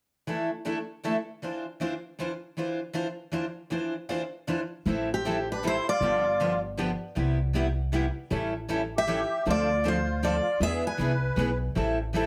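Set in a moderate studio reverb, this bittersweet, swinging excerpt of acoustic string swing in A minor at 157 BPM in 3/4 opens with two bright, picked steel-string acoustic guitars playing the accompaniment, before a woody, thumpy upright bass with gut strings joins at 4.9 seconds, and a third bright, picked guitar carries the melody at 5.1 and 9.0 seconds over a reedy, shimmering musette accordion second line, the chords moving from Am7 through G7, Cmaj7, A7, Dm7 and E7 back to Am7.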